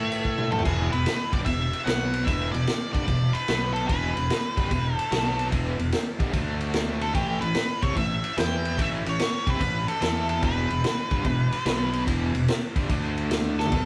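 A swung 4/4 feel at 147 BPM drives this gritty, raunchy blues rock and southern rock power-trio fragment, played live in one room with light reverb and tuned to A4 = 444 Hz. An up-front vintage drum kit with dark cymbals, a punchy kick and a rolled-off top opens with a fill at 0.2 s and adds another at 13.5 s, while a bright, double-tracked cranked stack guitar picks an overdriven riff with tremolo over E5, B5, A5 and D5 power chords, and a growly fuzz bass with overdrive holds down the low end. Above them, an octave-fuzz lead guitar, warm and distorted with slapback echo, sits up front with a picked melody between G4 and G5.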